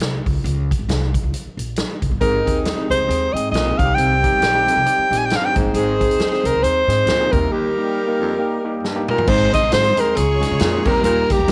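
A swung eighth-note groove in four drives this uplifting, joyful 1960s-style soul excerpt, carried from the first beat by a woody, thumpy pizzicato upright bass on gut strings and a natural-sounding big-band drum kit with a punchy kick, a medium-tuned snare, hi-hat, toms and crash cymbal ringing in a big room. At 2.2 seconds the band fills out: a clear alto saxophone takes the melody up front with a soft-attacked subtone, backed by a tight saxophone section with jazz vibrato. Underneath, a breathy, whispered baritone saxophone plays an intimate riff, while a bright, barky electric piano, gritty through a combo amp, comps in the background and a fat, lightly overdriven tonewheel organ with key click and third-harmonic percussion holds very quiet sustained chords. A break arrives at 7.5 seconds, closed by a drum fill. At 9.1 seconds a very quiet, sparkling glockenspiel struck with brass mallets enters, and from 9.3 seconds a new section brings in a lush, focused bowed violin section, all set in light studio reverb.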